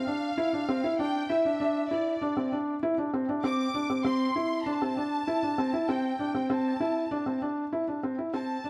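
A felt-muted upright piano and a symphonic violin section begin together, the piano repeating a soft, mellow riff in a narrow register while the bowed strings carry the melody above it. This short electronica passage, cut from a longer piece, moves at 98 BPM in a straight 4/4 and rests on a Cadd9 chord in C major, giving it a tender, hopeful mood. The piano sits up front with an intimate, muted tone and a delay trailing its notes. The violin ensemble is lush and smooth, played with vibrato and an even, warm sheen across its high melody. A moderate echo-chamber reverb opens the space around them, and the sound fades out from 6.7 to 8.7 seconds.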